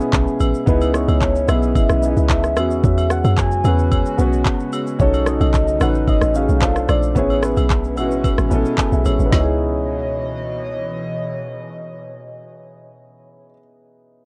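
Heard through worn, warbling cassette tape with light reverb, this deep, hypnotic amapiano excerpt in C# minor at 111 BPM sets a knocking, woody electronic R&B drum kit with handclaps, rim click and shaker, a round, dark log drum bass up front, and acoustic woodblock and agogo bells alongside a warm grand piano, a breathy, pumping pad and mellow soft-mallet marimba stabs with tape echo. A gentle, keys-like synth lead with vibrato carries the melody from 0.7 seconds onward, and when the drums and percussion fall away near 9.5 seconds, the piano, pad, marimba, lead and bass continue on a C#m9 chord.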